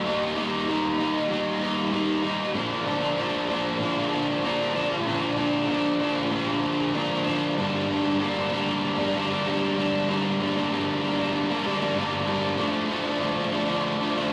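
Brooding and melancholic, this short rock excerpt moves at 96 BPM in a straight 4/4 feel, set in G minor. A lone overdriven electric guitar carries the whole passage from 0.0 to 14.3 seconds, picked and double-tracked, sitting up front with a slapback echo that thickens its gritty, warm tone. Its line ranges from G2 to Eb4, drifting through Eb and Bb in the opening stretch before turning to G minor at 7.6 seconds and then D minor. The sound is that of a rough rehearsal-room take, with a damp studio ambience and a saturated sheen that give the guitar a lived-in, unpolished character. Cut from a longer piece, it feels like a moody fragment caught mid-thought.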